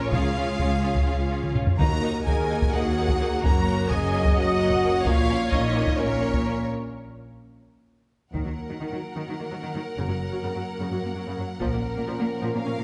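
Set on a moderately reverberant scoring stage with a rounded, dark top end, this dramatic, heroic cinematic excerpt from an epic orchestral film score drives forward at 257 BPM in eighths, in 7/8 and Eb minor. A lush, focused violin section carries the melody up close, while a second violin line sits smooth and distant in the background and a close, vibrato-rich viola section fills out the accompaniment. Mellow, roomy French horns and a chamber string section, present until 6.7 s, hold sustained chords behind them, and bowed cellos and expressive double basses anchor the bass beneath. A close taiko ensemble struck with heavy sticks is the most prominent layer, with fills around 1.4 s and 8.0 s, and a very quiet timpani on calf heads sounds briefly near 1.8 s. The harmony cycles through Db, Ebm, Gb and Bbm, pausing on a break from 6.7 s before the Ebm–Gb–Bbm progression returns for the closing passage.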